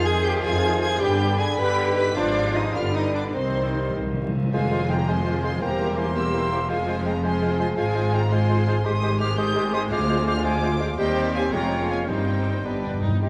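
Classical orchestral music in a dramatic, stormy mood, this fast romantic movement in 6/8 runs at about 100-113 BPM, moving from C minor to F minor at 4.5 s and back to C minor at 8.9 s, and it is cut from a longer piece. A clear studio violin section carries the smooth, even melody with vibrato, supported by a second, very quiet and lush violin section, a focused viola section in the background, and rich cello and distant double bass sections holding the bass. Concert flute with a pure straight tone and crisp attack joins the woodwind second lines alongside clear oboe and clarinet, while a dark bassoon adds accompaniment in the background. Mellow French horns and vintage-toned trombones, both tight and very quiet, sustain chords. Dark cymbals and tam-tam enter softly from 2.2 s, and timpani struck with hard mallets play a fill from 3.3 s that leads into a full-band accent at 4.5 s, returning near the close. 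The whole performance sits in a wet scoring-stage reverb with a layer of vinyl crackle, giving the restless music a slightly aged sheen.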